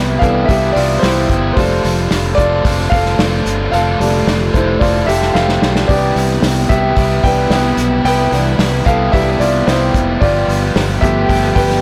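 A blown-out, overdriven recording with moderate studio reverb and a touch of small-room ambience carries this hopeful, piano-driven pop excerpt at 111 BPM in a straight 4/4, moving from Cmaj7 to F6 before landing on G7 at 10.2 seconds. A polished, up-front grand piano plays a solo throughout, supported by a round fingered electric bass, a dark, compressed overdriven electric guitar riff, and a very quiet bowed string section holding soft-attack sul tasto chords with light vibrato. An acoustic drum kit played with bundle sticks, with a tight kick and medium-tuned snare, enters at 0.2 seconds and drops a brief fill at 5.4 seconds.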